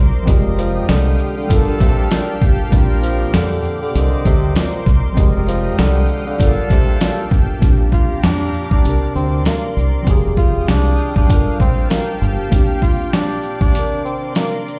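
A gritty, compressed sampler-style drum kit with a thumpy kick and medium-tuned snare sits up front in this confident, nostalgic boom-bap hip-hop cut at 98 BPM in Bb major, swinging beneath a breathy, subtone tenor saxophone melody with scooped notes and light vibrato, a worn, slightly out-of-tune tine electric piano, a lush, detuned sawtooth pad with chorus, a round, punchy dub bass that stops at 12.4 s, tight, close-miked trumpet stabs with digital delay running until 7.3 s, and a jingly tambourine in the background, the whole mix carrying large studio reverb and vinyl crackle.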